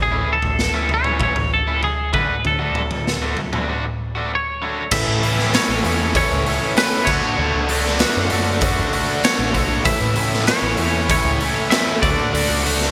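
Indie rock at 97 BPM in A major, upbeat yet wistful, where a twangy, clean lead guitar with subtle chorus and digital delay carries the melody over a round, dark picked bass, a bright overdriven guitar riff and a gritty, punchy garage drum kit with gated reverb, and then at 4.9 seconds a crunchy second guitar with lush chorus sits back in the mix and a very quiet, warbling organ-string pad adds mellow sustained chords, all in a bright 1980s-style hall sound on this short cut from a longer piece.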